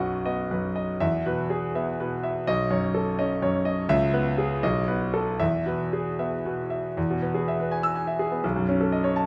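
A clear concert grand piano opens alone and carries this brief fragment of a classical virtuoso study, heroic and brilliant in mood. The playing moves in 6/8 with a free, rubato feel, spanning from B1 in the deep bass up to E6. Its tone is smooth with a vintage character, placed up front and ringing into a moderate recital hall reverb. The harmony passes through B, E, B9, C#m7 and B7 before settling on E around 5.4 seconds, and the opening idea returns at 7.0 seconds. The passage reaches B9 at 8.4 seconds and breaks off at 9.3 seconds, clearly cut from a longer piece.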